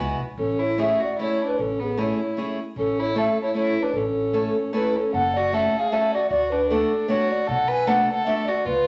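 Soaked in a large studio reverb with a dark, rolled-off top, this short musette waltz fragment from a longer piece has a whirling, nostalgic lilt in a lightly swung three. A hollow, woody pan flute carries the melody, its pure straight tone marked by a crisp, chiffy attack. Beneath it a single bowed violin floats a soft-edged second line with an airy, slightly boxy character. A picked steel-string parlour guitar sits up close in the mix with bright fresh strings and the odd finger squeak, while a pizzicato upright bass adds a woody pulse underneath. The harmony glides from a sunny major colour into a minor-tinged turn at 5.1 s, and the guitar drops out at 8.5 s as the other parts ring on to the end.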